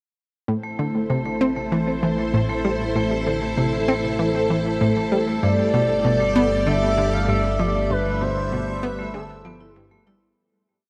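Sequencer-driven ambient space music with a hypnotic, expansive mood, where a lush, vintage string machine holds sustained chords over a round, detuned analog pluck repeating an 8-step sequence through chorus and delay. A metallic, ringing vibraphone struck with hard mallets cycles a 3-step loop that drifts against the bar. At 5.4 s the harmony moves from Am to Gadd9 and a smooth, expressive sawtooth lead enters with portamento and vibrato, before the piece fades out from 7.1 s inside a vast, echoing reverb.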